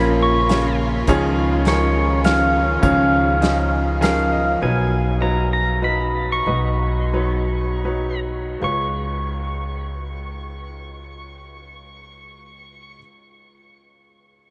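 A clean, compressed pedal steel guitar carries the melody up front in this tender, hopeful acoustic folk-pop ballad in 3/4, played with fingerpicks and slide, its volume swells dressed in subtle chorus and a diffuse ambient delay. A bright, brilliant upright piano with audible action noise and a growly pizzicato upright bass on steel strings sit close beside it. A punchy unplugged drum kit played with bundle sticks drops out at 4.2 seconds, a dark, softly bowed chamber string section stops at 4.6 seconds, and the tempo slows from 4.6 to 8.6 seconds, all soaked in a huge, dreamy reverb.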